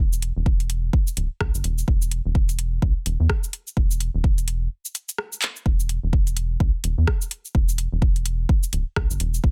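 A swung 16th-note groove drives this hypnotic, cool minimal techno fragment, where a punchy, up-front electronic kick, a house kit of cabasa, handclaps, rim click and metallic hi-hats, and a rubbery, hollow square-wave bass with sidechain pumping sit in a dry mix, moving through a break at 4.7 seconds and a drum fill at 5.4 seconds before the drop at 5.7 seconds.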